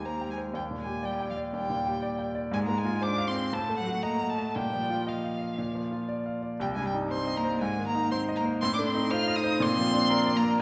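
A bright, brilliant grand piano sits up front in this quick classical-period movement for piano trio, its polished, intimate tone carrying long sustain and audible action noise as it supplies the accompaniment across a span from C2 to G5. Above it, a single violin sings the graceful, cheerful melody between F5 and F6, its bowed line rich, focused and smooth on top, with vibrato, and it sits up front close to the listener. A lone cello adds a second line from F3 to F4, bowed with vibrato and a rich, focused tone that sounds more distant in the blend. At 120 BPM in a straight 4/4, the passage moves through harmonies such as Cm/Eb, Fm/Ab, Ebdim/A and Abadd9, settling onto Bb at 9.6 seconds. All three players sound together throughout this 10.6-second fragment, cut from a longer piece, and a wet recital-hall reverb with a 1.6-second decay places them in a church or concert hall.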